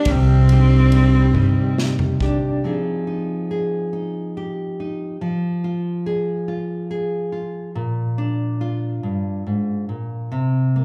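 In a slow, straight 6/8 lilt, this melancholic, heartbroken acoustic folk-pop ballad fragment opens with a clear, bowed cello melody, a woody, growly pizzicato upright bass, an airy country drum kit with a punchy kick and a slightly broken-up, lo-fi electric guitar with tremolo and slapback echo. All of these fall away by about 2.7 seconds after a drum fill, while a full-bodied, fingerpicked nylon-string guitar carries on alone through a minor-leaning chord progression until 10.8 seconds, everything sounding like a live gig heard through a club's PA.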